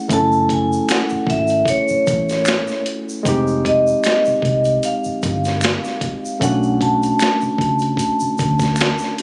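A soulful, late-night neo-soul R&B fragment at 76 BPM with a light 16th-note swing opens on a ringing, metallic vibraphone melody with slow motor vibrato and a barky, lightly overdriven tine electric piano comping through F#m9, Fm9 and Bm9, joined at 0.1 seconds by a dark, foam-muted fingered bass, a gritty sampler-style boom bap kit with thumpy kick, high-tuned snare, hi-hat and finger snaps, and a soft layer of egg shaker and group handclaps, all caught in a compressed, lightly reverberant studio ambience with a phone-in-the-room character.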